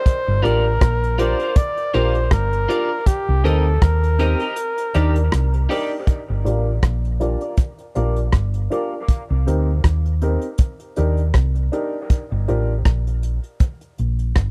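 Hypnotic and deep, this dry, close dub reggae cut from a longer piece opens with a smooth, lightly vibrato flugelhorn melody with scooped notes and dub echo that ends at 5.7 s, over up-front brushed drums with a punchy kick and a round, dark hollow-body bass, while a slightly broken-up electric guitar with lush chorus, filtering and echo plays until 8.9 s and a woody, intimate upright piano adds filtered, echoing stabs until 12.7 s.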